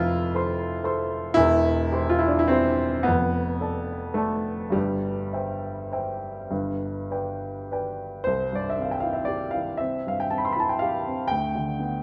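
Romantic classical nocturne for solo piano, nostalgic and serene, unfolding in 6/8 with free rubato. A woody, polished upright piano sits up front and spans deep bass to bright upper notes across the 12-second fragment, its harmony drifting from F through C and D minor toward G before settling on C at 8.3 seconds. Moderate recital hall reverb adds a soft glow around the piano.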